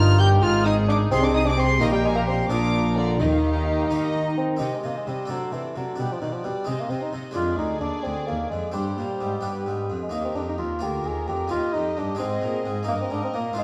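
A steady 6/8 at 87 dotted-quarter beats per minute carries this festive, brilliant baroque-style concerto movement, cut from a longer piece, which opens in E-flat major, turns to C minor at 4.6 seconds and returns home at 10.1 seconds. A mellow, softly vibrato-touched bassoon sits up front as the soloist, sharing the melody with a rich gut-string violin section, while a second violin line and a dark viola section fill in the background and a brilliant, plucked harpsichord with octave strings adds sparkle. Beneath them a distant cello section and a bowed double bass section anchor the bass, the double bass dropping out at 4.6 seconds, all set in the lingering reverb of a recital hall for a dark, warm production.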